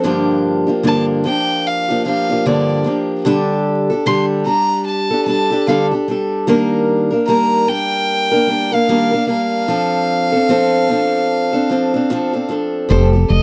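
A rich, floating violin carries the tender, reflective melody from 0.9 seconds, bowed sul tasto with a soft attack by a single player who sits up front. Beneath it, a picked acoustic archtop guitar with audible finger squeak lays down a swung acoustic pop accompaniment through Gm7, Dsus4, Ebmaj7 and F6, and a woody, round fretless electric bass with ensemble chorus arrives only at 12.9 seconds on an Fadd9 as the fragment is cut off. The close, dry 1970s-style studio sound carries light reverb and a layer of vinyl crackle.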